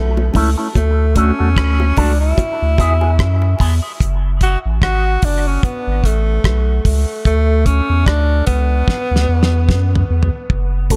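Deep and spacious, this short dub reggae excerpt at 74 BPM swings gently over a round, sine-like sub bass and a dry, up-front 70s drum kit with a fat snare and tight kick, while a clear tenor saxophone carries the melody with vibrato and dub echo, a bright, twangy electric guitar with an envelope filter, phaser and dub echo adds picked accompaniment until 4.6 seconds before returning briefly at 10.9 seconds, low-tuned bongos sit very quietly under soft hands, a filter sweep runs from 0.8 to 7.3 seconds, and a drum fill closes things out from 8.9 seconds across chords moving from A through D, E, F#m and Bm9 to E5.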